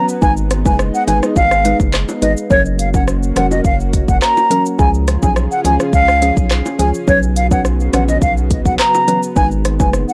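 Dancehall at 105 BPM in F# major, summery and bouncy, where an airy wooden flute with vibrato and tape echo carries the melody up front over a hollow, detuned square pluck and a lush sawtooth pad that both pump with sidechain and chorus, while a deep house drum kit with a deep kick and smooth hats, a thick saturated sub bass, and round low-tuned bongos in the background drive chords moving from G#m through F#, C# and Bsus2 in a dry, gritty recording cut from a longer piece.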